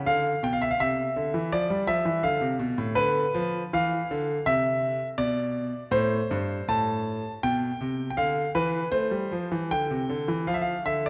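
Dance-like and radiant, this baroque-style classical suite movement for solo concert grand piano moves at 81 BPM in 4/4, with uneven, rubato beats and tuning at A4 = 442 Hz. The brilliant, up-front piano spans G2 to A5, its deep bass and natural tone set in a moderate concert hall reverb within a dark, warm production. Over this 11.1-second passage cut from a longer piece, the harmony travels from Dm and Dm69 through C, Gsus24 and G/B to a rootless Am, reaching Dm/F at 10.5 seconds.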